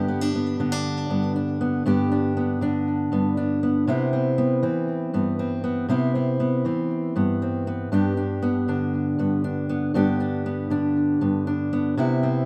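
Folk in a hopeful mood, this short cut from a longer piece features a solo fingerpicked steel-string acoustic guitar, dark in tone with audible finger squeak and sitting up front, moving from G to Cmaj7 and back to G over 12.5 seconds, touched by digital delay and set in a wet studio ambience with the rough feel of a home demo.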